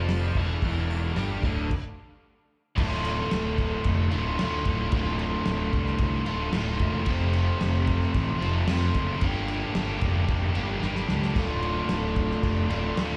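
Raw and gritty, this garage rock excerpt in D minor drives at 112 BPM in a straight 4/4, captured live through a club's PA with a touch of room reverb. A biting, double-tracked overdriven guitar riff sits up front with slapback echo, over a fuzzed, tube-saturated fingered bass and a cloth-damped, thuddy drum kit with a fat snare, tight kick and dark cymbals. A mellow vintage combo organ holds clean, lightly vibrato chords in the background at the start and returns at 11.4 seconds, after a brief stop at 1.7 seconds and a drum fill at 10.8 seconds, as the chords move from Dm through F and Gm back to Dm.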